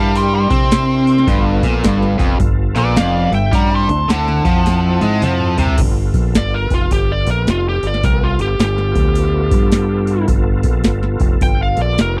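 A swung shuffle in four drives this raunchy, swaggering blues rock and southern rock cut, with a booming analog drum machine entering at 0.2 seconds: deep kick, tonal snare, metallic hats, crash and toms, all tape-warm. A growling, fingered electric bass sits up front with its own overdrive, alongside a cranked, double-tracked stack guitar picking a bright riff over C7, G7 and D7 changes. An overdriven slide guitar carries the melody from the start, played with fingerpicks and thrown back by a slapback echo, while a dark, smooth lead guitar traces a second line in the background. A thick, gritty tonewheel organ holds sustained chords beneath it all, colored by slow rotary speaker and chorus vibrato. After a drum fill from 4.7 seconds, the riff guitar and second lead drop out at 5.8 seconds as the slide takes a solo over G7, all captured in a dry, close 1970s-style studio sound.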